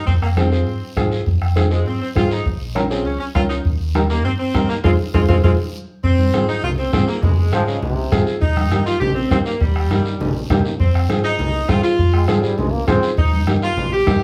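A live band playing together in one room, washed in a wet studio reverb, delivers this fiery, passionate cumbia, cut from a longer piece. An up-front saxophone section carries the clear, jazz-style melody with light vibrato, over a dark, round hollow-body electric bass, a soft-beaten vintage bombo, a raspy close guiro, distant ringing congas and a worn, woody upright piano with audible action noise and a slightly detuned tone. The band hits an accent at 4.8 seconds, and a bright, roomy solo trombone adds brief second-line phrases at 7.5 and 12.1 seconds.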